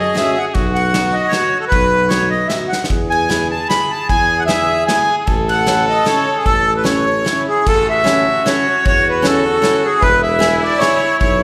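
An up-front, reedy accordion opens this bouncy, festive alpine folk dance at once, carrying the melody with a slow beating in its tone. Beside it, a clear trumpet plays a soft-attacked second line with light vibrato in a classical style, while a warm tuba supplies the bass from a distant, roomy position. A picked steel-string acoustic guitar adds concert-style accompaniment, its finger squeak audible, and a loose drum kit with a tight kick, medium-tuned snare, crash and ride sits in a small, pumping room, marking a fill at 2.7 seconds. The triple-metre dance has a swung, rubato lilt, and the music moves into a new section at 7.7 seconds. A wet, hall-like reverb surrounds the band in this passage cut from a longer piece.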